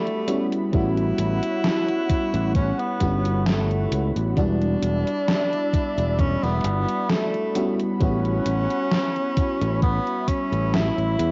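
A breathy, intimate tenor saxophone opens this hazy, nostalgic vaporwave excerpt at a slow 66 BPM with a lightly swung feel, its scooped, vibrato-laden jazz phrasing coated in 12-bit sampler grit and tape echo over a dreamy FM electric piano with lush chorus and a thick, detuned sawtooth pad sitting in the background. A gated 80s drum machine enters almost at once with overdriven hi-hat and a gated-reverb snare, and at 0.7 seconds a bright, growly fingered electric bass and a thumpy, overdriven electronic kick join up front as the chords move from A13 to Em7 and back. The whole piece has the muffled, dulled sound of a home cassette recording with light room reverb.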